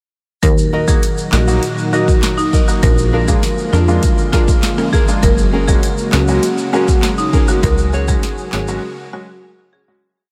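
Soaked in a huge, dreamy reverb, this tough, bouncy dancehall piece in Eb minor at 100 BPM rides a produced drum kit with a deep kick, sharp clap-layered snare and metallic hats, while a punchy, sawtooth bass plucks a syncopated low line, a woody, bright marimba with a diffuse delay carries the syncopated hook, a clear grand piano plays close off-beat chords with sidechain pumping, a small fingerpicked nylon-string guitar adds off-beat chops in the background, a dark, detuned pad with chorus and sidechain pumping sustains Ebm, Bb7, Gbadd9 and Dbsus4 chords, vintage-sounding tube shaker and timbale accents sit low, and the piece fades out from 7.6 seconds into a break at 8.8 seconds where only pad, piano and marimba linger.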